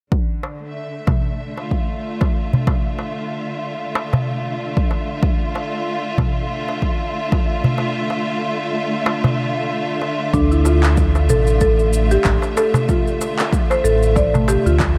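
Lush, bright strings hold sustained D minor chords that pump against a punchy, overdriven electronic kick, while a crisp metal-shell darbuka sits close and dry in this hypnotic, meditative organic downtempo excerpt at 94 BPM with a swung 16th-note feel. The kick drops out from 7.8 to 10.3 seconds. At 10.3 seconds a round, deep analog bass arrives up front, joined by buzzing, woody marimba arpeggios under a filter sweep and delay, overdriven electronic shaker and handclaps, and a very quiet bronze singing bowl ringing with slow beating, all within a small room's light reverb.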